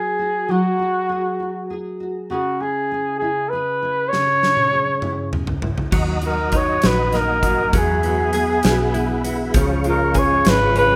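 Romantic and heartfelt, this six-eight pop ballad moves at a slow 66 BPM, with a warm, up-front flugelhorn singing the melody over a full-bodied, fingerpicked, double-tracked nylon-string guitar from the start. A huge arena drum kit with bright cymbals, a fat snare and a punchy kick enters with a fill at 4.1 seconds. At 5.9 seconds a mellow, flute-like tonewheel organ with chorus vibrato and fast rotary speaker, a clean, compressed direct-recorded electric guitar picking tremolo arpeggios, and a dark, round, foam-muted vintage bass join in, all in a rough home-demo mix with a small room's reverb.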